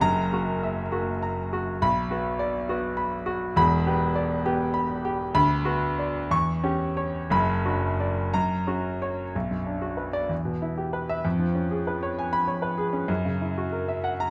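Swaying in 6/8 at a rubato pulse of 57-69 BPM counted in dotted quarters, this romantic character piece for solo piano moves with a stormy, brooding restlessness in B minor. A single grand piano carries the whole passage, its tone clear, natural and placed up front, ranging from a deep E1 in the bass to C#6 at the top. The harmony opens on F#7 and settles into B minor, passing through Em7, a C#dim chord over E and a B minor chord over F# before coming to rest on F#. At 9.3 s a new section begins, returning to B minor and Em before the tension of C#7 over E# resolves onto F#7 at 13.1 s. A moderate large-studio reverb with a 1.2-second decay surrounds the piano, and the instrument is tuned to A4 = 435 Hz. The recording is a short cut of 14.3 seconds taken from a longer piece.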